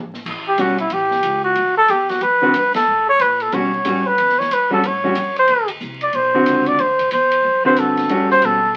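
Opening with an airy acoustic drum kit of dark cymbals and boomy kick at 0.1 s, joined by woody pizzicato upright bass, this sophisticated, playful excerpt of small-group swing and bop in A mixolydian moves at 184 BPM, with a mellow trumpet out front carrying the melody through light vibrato and scooped notes, a clean, dark hollow-body guitar comping up front beside it, and a band accent at 2.7 seconds, all heard through moderate club reverb and the crackle of a very old 78 rpm record.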